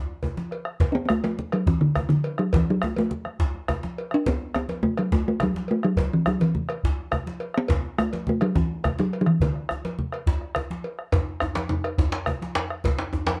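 A resonant talking drum opens the excerpt, carrying a melody up front, close and dry, in D major pentatonic. It sits over a driving, festive West African drum ensemble at 140 BPM in 12/8. Bright, thin-skinned congas played with soft hands, a metallic cowbell and a djembe with metal rattles struck with hard hands fill out the groove. A round bombo sits up front in the mix. At 10.8 seconds the talking drum drops out, and from 11.1 seconds a second, vintage-sounding, band-limited djembe steps forward, played hard and up front, through to the close at 13.4 seconds. The production is dark with light reverb, mixing dry, close drums with a livelier room sound on the rattling djembe.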